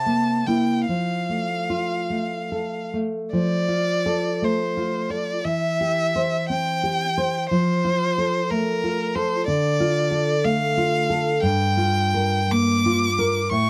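A single bowed violin with a rich, focused vibrato sings an elegiac, solemn melody up front over a dark, full-bodied nylon-string classical guitar, whose thumb-plucked accompaniment carries audible finger squeaks, in this romantic duo excerpt in F major and 6/8, moving with a slow, rubato lilt of 47-62 BPM in dotted quarters, tuned to A4 = 441 Hz, and captured by close, detailed microphones in light reverb, as the harmony shifts from C7 through F and C/E to Dm and a closing Gm7 by 11.4 seconds.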